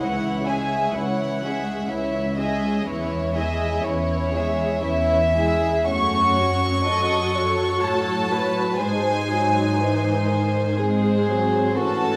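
A slow, romantic classical movement for string orchestra in C# minor, moving at 61 BPM in a rubato 3/4. The mood is solemn and melancholic. The first violins carry the melody high and up front, with a pure, floating sul tasto tone, while the second violins trace a soft-edged line beneath them. The violas fill in the accompaniment with a dark, woody, lush vibrato. The cellos anchor the bass with an intimate, close sound and light vibrato. The chords move from C#m through C#m/E and F#m to G# across this 12.2-second excerpt, and the strings sit in a concert hall reverb that lingers for about 2.0 seconds.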